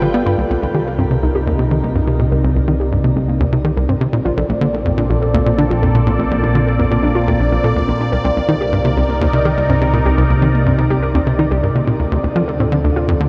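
A huge, wet reverb with a decay of about 9.3 seconds bathes this mysterious, hypnotic stretch of sequencer-driven ambient space music, cut from a longer piece and moving at 124 BPM in a straight 4/4 in C dorian. Up front, a swirling, airy analog pad built from detuned sawtooth and a noise layer holds sustained chords with a slow attack and long release, its phaser, chorus and shimmer reverb keeping it evolving. Beside it, a tight, punchy sequencer bass drives a riff, its sawtooth and square tones shaped by a fast-attack filter pluck and a mellow decay, with delay trailing behind. Deep beneath sits a round sine sub bass, while in the background a warbling, lo-fi pluck of detuned triangle and sawtooth with a noise layer spins arpeggios through chorus, delay, shimmer reverb and a filter sweep. All four parts play throughout the 13.3 seconds as the harmony moves from Cm7 to Bbmaj7 at 4.3 seconds, back to Cm7, and onto Dm7 at 12.0 seconds.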